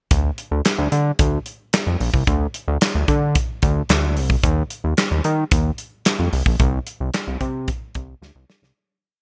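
A fat, saturated, detuned sawtooth bass plays a syncopated line with a filter pluck over a tight-kicked studio drum kit, whose snare is layered with handclaps and whose kit is given gated reverb, in a funky, late-night early-eighties boogie funk piece at 111 BPM in D phrygian, with a bright digital sheen, a fade-out from 6.6 seconds and a drum fill at 8.2 seconds.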